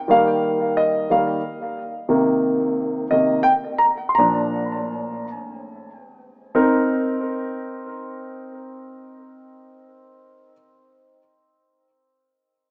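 A rough home-demo mix with a small-speaker sound and a moderate plate reverb frames this dramatic, aching pop excerpt in C minor, in a slow 6/8 at 46-60 BPM on the dotted quarter. A clear concert grand piano, up front with deep bass, short sustain and a touch of tape echo, plays alone across a range from Bb2 to C6, moving through Ebadd9, Cm7 and Bb and slowing down from 2.1 to 6.5 seconds. A new section opens on Cm7 at 6.5 seconds, and the piano stops at 10.5 seconds.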